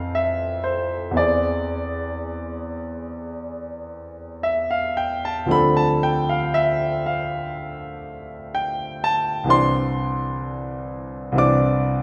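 Impressionist classical solo piano in a nocturnal, wistful mood, this twelve-second fragment of a longer piece drifts in rubato 4/4 at roughly 54-65 BPM, with a clear concert grand of deep bass and open tone spanning C2 to D6 through Fmaj7, Eaug7, Dm7 and Cadd9, heard from further back in a recital hall whose wet reverb lingers for about 1.5 seconds.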